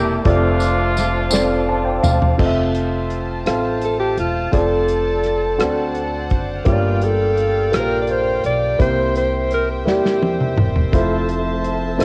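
A cut from a longer slow gospel piece in 6/8 opens with a distant, roomy saxophone section stating a brief jazz-style melody over a woody, up-front upright piano, a soft flute-like tonewheel organ with chorus vibrato and key click in the background, and a pizzicato upright bass with steel strings. A dark, smooth country drum kit with a tight kick and medium-tuned snare joins almost at once, a jingly tambourine adds sparkle, and drums and piano share a fill before the organ and tambourine fall away at 2.4 seconds as a pure, floating bowed string section takes over the sustained chords. At 3.8 seconds a solo alto saxophone steps up front, its subtone, vibrato and scooped notes giving the line a smooth, jazz-inflected voice over the rich seventh-chord harmony. The drums play another fill late in the passage, and the organ returns at 10.9 seconds as the chords settle back home. Light reverb, small-room ambience and a cassette sheen give the whole piece an intimate, homemade glow that suits its jubilant, hopeful mood.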